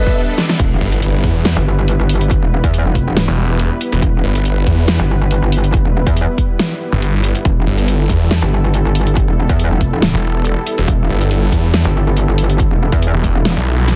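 Heavy wobble dubstep in E minor at 140 BPM with a half-time, lightly swung feel, this chaotic, menacing excerpt opens on a Gadd9 chord from a lush, detuned supersaw pad, sidechain-pumped and low-pass filtered, alongside a very quiet riser and a drum fill before a brief break gives way to the drop at 0.6 seconds, where an impact lands and the harmony settles on Em. Up front, a metallic, chorused FM wobble bass and a snarling, growling sawtooth bass with a moving notch share the low register from E1 to E2, driven by a punchy, tape-tinged electronic kick and an overdriven drum kit with a huge snare, bright hats and crashes. The dense, heavily limited master sits in a digital ambience, with the pad's slow attack and long release glowing behind the aggressive low end.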